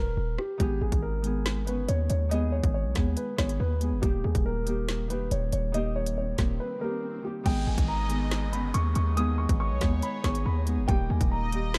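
Drill hip hop in a menacing, tense half-time groove, with a dark, boxy concert grand piano carrying the melody through a low-pass filter and digital delay over a punchy, saturated 808-style bass and an up-front electronic kit of hard-clipped kick, woody snare, crisp hats, rim clicks and crash. A bright, thumb-plucked Celtic harp enters at 0.6 seconds with ringing filtered accompaniment, and a background swell and downlifter starts at 6.2 seconds, leading into a break. From 7.5 seconds a reedy, vintage accordion holds sustained chords, joined at 7.9 seconds by a distant, lush bowed violin section with vibrato and delay, all set in studio reverb with a dark, warm production.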